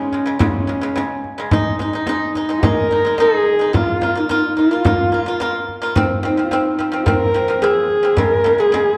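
Mongolian folk in a windswept, vast mood at 108 BPM in B-flat minor, this short cut from a longer piece puts a single husky, woody horsehead fiddle up front on the bowed melody with vibrato, soft attacks and portamento, over warm, percussive pipa arpeggios played with fingerpicks and a deep, large frame drum, set in a wet recital-hall reverb with a dark production.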